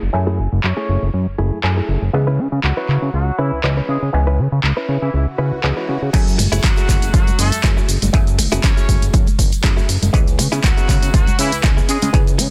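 A dense, heavily limited modern master with a dry, close sound opens this groovy, sensual slice of filtered disco house, cut from a longer piece and carrying a light swing. Everything except the added kick and hand percussion sits under a low-pass filter sweep through the first half, while a fat, detuned analog bass holds the low end up front, pumping against the sidechain. An overdriven, twangy auto-wah clav with phaser colour comps through a combo amp, and a bright, direct-recorded clean electric guitar plays a compressed picked riff beside it. From 0.6 seconds a clear, tight horn section carries the melody in octave doubling with light vibrato and vintage sampler grit, as a tape-warm analog drum machine adds hi-hat, handclaps, cabasa and crash cymbal, recorded again in a small room. A background electronic swell leads into the drop at 6.1 seconds, where a punchy electronic kick lands up front and very quiet, acoustic congas and tambourine join over the minor-ninth and minor-seventh chords.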